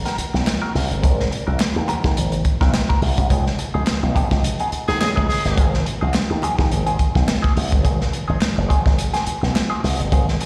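Heard as a live gig through the venue's PA with a light recital-hall reverb, this energetic, playful funk excerpt rides a gritty, saturated breakbeat drum kit with a tight kick and a bright, punchy slap bass with an envelope filter pushed up front. A clean, twangy electric guitar with wah and slapback echo adds compressed accompaniment, while ringing congas and a crisp group handclap sit very quiet in the mix over Ab9 and Db9 chords, with a band accent from 3.3 to 5.6 seconds. Briefly, at 4.9 seconds, a breathy tenor saxophone slips in with a whispered, intimate, scooped note carrying vibrato and its own slapback echo.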